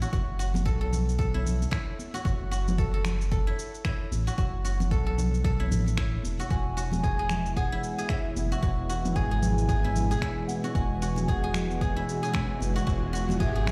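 A bright, silvery guzheng opens this hypnotic, mystical stretch of organic downtempo, its ringing fingerpicked arpeggios trailed by tape echo and shimmer reverb over a deep, round sine sub bass that sits up front with tube saturation, while electronic shaker and finger snaps, re-recorded in a large room, keep time. An overdriven, layered electronic kick and hard-handed congas in the background join almost at once, setting a 113 BPM groove in 4/4 with a loose sixteenth-note swing in F# minor. At 6.5 seconds the harmony moves from F#m7 to E as a bass bansuri takes the melody, its pure bamboo tone carrying vibrato and tongued attacks, and a vintage sawtooth analog pad arrives with detuned, warbling chords that pump with sidechain under chorus and shimmer reverb. A background riser rises in at 12.0 seconds. The mix carries a light digital ambience and stony room reverb, as if played on a big sound system in a bare room, and the passage is cut from a longer piece.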